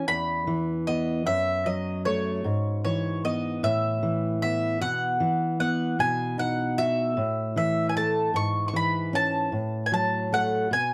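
A dry, close recording with light reverb carries this gentle, nostalgic acoustic folk fragment in 6/8, where an up-front, woody mandolin with double strings picks the melody high above a full-bodied fingerpicked dreadnought guitar, both playing throughout the 10.9 seconds as the chords move from E5 through F#m, Asus2 and a Bsus4 resolving to B.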